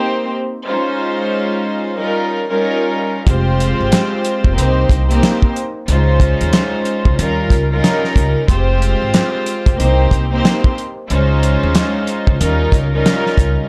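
Dark, lightly reverberant production frames this gritty, reflective boom-bap hip-hop excerpt in F minor at 92 BPM with a swung 4/4 feel, where a soft-attack, floating bowed string section played sul tasto through a tape-worn, filtered haze opens alone over Cm7, Dbmaj7 and Eb7 before a woody pizzicato upright bass and a cloth-damped, thuddy drum kit with fat snare, tight kick, hi-hat and handclaps arrive at 3.3 s.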